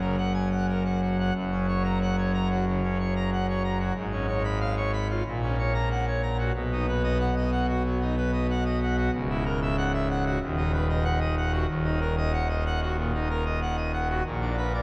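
Heard through worn, warbling cassette tape with drifting pitch and a long, wet church reverb, this stormy, dramatic fragment of a classical organ toccata moves at 93 BPM in a straight 4/4. A solo pipe organ sits up front on full organ with bright mixtures, its majestic, brilliant sound and romantic voicing spanning deep bass notes to high treble, first in F# major. At 11.7 s the harmony darkens into Eb minor before the fragment breaks off.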